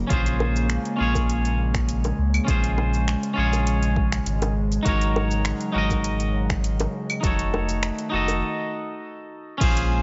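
Sunset chillout in Bb minor at 101 BPM, smooth and relaxed, with a round, deep sub bass sitting up front beneath a clean, twangy electric guitar accompaniment trailed by digital delay and an airy, breathy pad whose warbling chorus holds sustained chords moving from Bbm9 through Ab9sus4 to F7b9b13. An overdriven, punchy electronic kick stays in the background alongside a deep house kit of metallic hi-hats, claves, finger snaps, shaker and crash cymbal, while tight, high-tuned bongos played with soft hands sound close and dry until 8.4 seconds, when a break arrives. Light reverb and a soft top end keep the mix mellow in this short cut from a longer piece.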